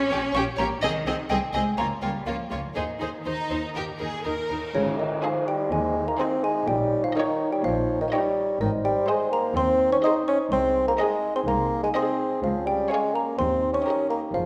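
Playful and quirky, this whimsical cinematic cue in Ab major moves at 125 BPM in a straight 4/4, with a woody, dry xylophone played with soft rubber mallets carrying the melody over vibrato-laden strings (an expressive, warm chamber cello section with portamento, expressive rich chamber violins on melody and a second line, a focused chamber viola section and a lush, distant symphonic double bass section), while dark cymbal swells and tam-tam sit in the background from 0.8 to 6.6 seconds, and at 4.7 seconds a band accent opens a new section where an up-front mellow bassoon and a distant, roomy French horn section holding sustained chords join, all bathed in a wet scoring-stage reverb.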